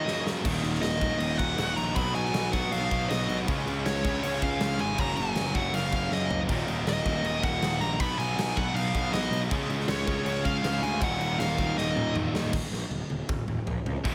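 A dark, distorted high-gain lead guitar carries the melody through this short, dark and aggressive heavy metal passage at 159 BPM in Eb minor, its tone thickened by slapback and tape echo until it drops out at 12.1 seconds. Beneath it, three picked rhythm guitars churn out the riff, one bright and high-gain, one tight and warm with slapback echo, and a very quiet, double-tracked, compressed fuzz guitar. A growly, overdriven fuzz bass joins at 0.5 seconds, while an up-front acoustic kit with a punchy kick and bright cymbals drives the whole and rolls into a drum fill over the closing Eb5 chord, all set in a lush hall reverb with a big arena sound.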